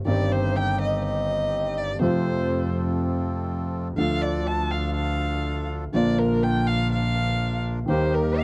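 A dark, bowed violin sounds from the first moment of this brief tango fragment, entering together with the rest of the group, up front and singing with vibrato, portamento and a smooth top as the solo voice over its second-line part. A warm concert grand piano, also up front, carries the accompaniment with a deep bass, while a clear, evenly bowed double bass adds a smooth, vibrato-tinged low line beneath it. A reedy bandoneon sits further back, punctuating the texture with stabs. The mood is sultry and dramatic, moving at about 123 BPM in 4/4 with a rubato feel in Bb major, as the harmony passes through Cm/G, F, Dm and Bb before touching Eb at 7.9 seconds. The sound is dry and close, like a 1970s studio session, with little reverb around the small group.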